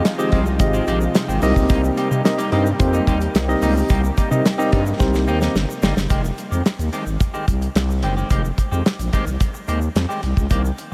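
A growling, thick FM bass sits up front beside a damped 70s drum kit with a tight kick, medium-tuned snare, hi-hat and handclaps, driving this late-night, slick early-eighties boogie funk groove at 109 BPM in F minor, cut from a longer piece and moving between Fm9 and Cm7. A worn, slightly out-of-tune tine electric piano and a lush, detuned unison pad with chorus carry the chords, the piano until about 5.6 seconds and the pad until about 6.1 seconds, while a clean, fingered semi-hollow guitar riff through analog chorus and a grainy egg shaker in the background run throughout. A drum fill at 5.0 seconds leads into the second section, and the whole mix is dreamy and soaked in a huge ambient reverb.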